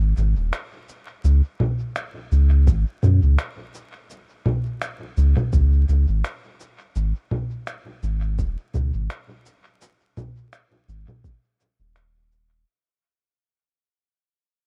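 A deep, round sine sub bass sits up front through this meditative, spacious ambient dub excerpt, joined at 0.2 seconds by muffled, overdriven cabasa, finger snaps and congas treated with dub echo, with a thumpy, pitched-down kick entering in the background at 2.7 seconds, all in a lightly swung 4/4 over vinyl crackle as the music fades out from 5.1 seconds.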